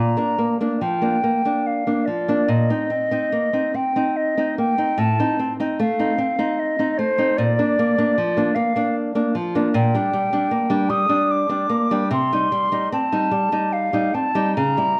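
A mellow, hollow concert flute with a pure, straight tone and crisp attack carries a solemn, melancholic melody over small, up-front fingerpicked nylon-string guitar in this romantic duo, moving in a rubato three-beat lilt through a moderate recital-hall reverb.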